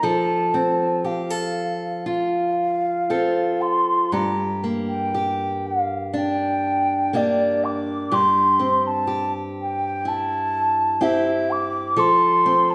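Bathed in the wet 1.4-second reverb of a church or concert hall, this haunting, mournful Celtic folk passage, cut from a longer piece and tuned to A4 = 439 Hz, drifts in a rubato 4/4 at 58-64 BPM, as an airy, woody baroque flute carries the expressive, tongued melody with vibrato over a bright, boxy fingerpicked steel-string acoustic guitar whose finger squeaks are audible, both parts up front as the harmony moves from F through Gm and C/G back to F.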